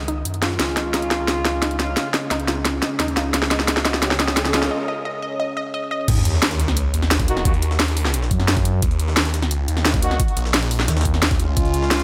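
Futuristic and mechanical, this excerpt of dark technical drum and bass at 175 BPM in Eb minor opens with a build-up: a deep, moody ambient pad sits in the background under a filter sweep while a lush, punchy unison pluck arpeggio sweeps alongside it, a swirling, saturated detuned saw bass holds up front, an overdriven drum-and-bass kit with cracking snare and bright hats plays a fill, smooth classical-style brass stabs cut in, and a riser and sub drop carry it through a brief break. At 6.1 seconds the drop lands with an impact, a knocking overdriven kick and a very quiet, gritty, pitched-up breakbeat kit joining the main kit, while a growling FM bass bursts in briefly and the brass stabs return near the close. A moderate lush hall reverb surrounds the whole, moving between Eb minor and Db chords.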